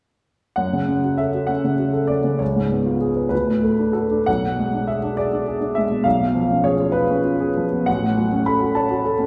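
Passionate and bittersweet, this romantic classical character piece for solo piano moves in 6/8 at 66 BPM in F# minor, with uneven, rubato-shaped beats. A woody, slightly detuned upright piano sits up front with an intimate, warm tone and audible action noise, spanning A1 to B5 from 0.6 to 9.3 s. Harmonies pass from F#m through C#7, D and G#dim/B to an F#m/A close, all bathed in a wet recital hall reverb heard from further back in the room in this brief passage cut from a longer piece.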